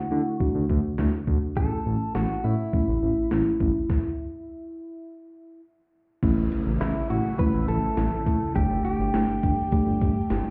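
Synth-pop at 103 BPM in a straight 4/4, this excerpt from a longer piece feels nostalgic and wistful, moving through D, A and Gsus2 chords. A bright, clean electric guitar, recorded direct, picked and compressed, carries the melody over muted, felt-like synth keys whose soft, dark, full-bodied tone is thickened by chorus. Underneath, a smooth, saturated synth bass with vibrato sits up front beside a gated 80s digital drum machine, whose thumpy kick, gated-reverb snare, hi-hat and crash have a tape-warm, sampler-style character. The groove breaks off in a stop from 3.9 to 6.2 s, and at 6.2 s a swirling, vintage string machine enters in the background with ensemble chorus and phaser, joined by a faint electronic downlifter. The mix sounds as if heard muffled through a wall, with club reverb and a light reverb around it.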